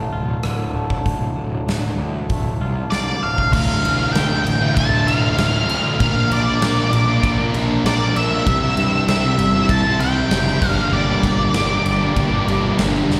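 A straight 4/4 pulse drives this dark, cathartic quiet-loud alternative rock passage, which opens on clean, twangy guitar arpeggios with harmonic tremolo and slapback echo over an up-front, overdriven fuzz bass, joined at 0.4 seconds by a big acoustic drum kit with bright cymbals and a punchy kick. A prominent octave-fuzz lead guitar then enters with the melody at 2.9 seconds, and a pair of distorted background fuzz guitars, one dark and one brighter, take up a riff at 3.5 seconds, the whole band heard live through a venue's PA in a recital-hall reverb.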